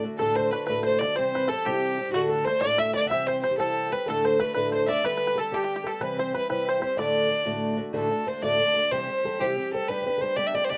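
A fingerpicked twelve-string acoustic guitar opens this bright, rollicking Celtic jig in 6/8 at 124 BPM in D mixolydian, its boxy, shimmering, octave-doubled strings up front. From 0.2 seconds a woody, dark-toned fiddle carries the melody with light vibrato. Beneath it, a twangy banjo played with fingerpicks joins on the second line until 7.8 seconds, alongside a very quiet, felt-muted upright piano that sounds mellow and intimate, with audible action noise. Close, detailed microphones and light reverb keep the sound immediate as the harmony moves between D and C before closing on G.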